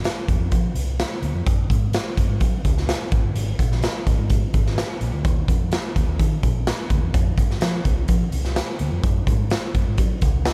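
A raw, gritty garage drum kit sits up front with a punchy kick, medium-tuned snare and hi-hat in a bright, pumping stone room, driving this uplifting, joyful slice of uptempo 1960s-style soul while a dark, round, foam-muted fingered electric bass plays beneath it, both running the full 10.5 seconds of a short cut from a longer piece with little reverb.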